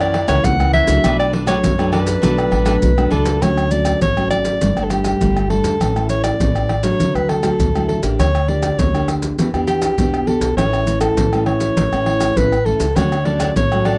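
A breathy soprano saxophone carries the melody from the first beat, over nylon-string guitar, upright bass, bright, crisp picked cavaquinho and a percussion section of maracas, surdo, pandeiro and tamborim, in a sunny, festive samba and choro piece at 101 BPM in straight 4/4. The music opens in B minor and moves to D major at 3.4 s, where the cavaquinho drops out. It returns at 13.0 s as the harmony lands back on a Dmaj7. The saxophone is mellow and jazz-inflected with a smooth top, sitting up front as the solo voice. The fingerpicked classical guitar is full-bodied with audible finger squeak, the pizzicato bass sounds woody, and the percussion is vintage and band-limited, with a deep surdo and hard hand strokes placed up front. The dry, close 1970s-style studio sound has only light reverb, and this cut from a longer piece ends after 14 seconds.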